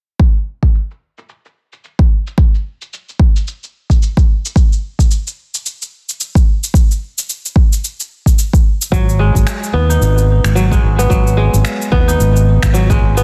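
Organic downtempo with a meditative mood and a light swing, this excerpt opens at 0.2 seconds on an electronic groove of deep, up-front kick drum and tape-softened cabasa and finger snaps, the snare lightly clipped and the percussion filtered in a small room. At 8.9 seconds a minor seventh chord arrives as a growly, amped fretless electric bass enters with subtle chorus and sidechain pumping, joined by crisp, ringing fingerpicked kora arpeggios trailed by a filtered digital delay. The mix is dry, dense and heavily limited, keeping the kick, bass and kora up front.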